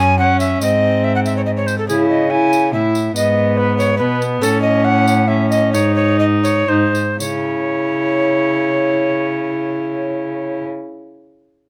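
Closely miked and detailed with light reverb, this cut from a longer renaissance-style consort dance in C# minor and 3/4 feels courtly and rustic at 116-143 BPM: an airy, chiffy alto recorder carries the melody up front over a rich, reedy gut-string viola accompaniment and a nasal, bowed period-style cello bass, a jingly tambourine joins at 0.4 s, and the tempo slows from 3.8 s until a C# minor chord opens a new section at 7.2 s.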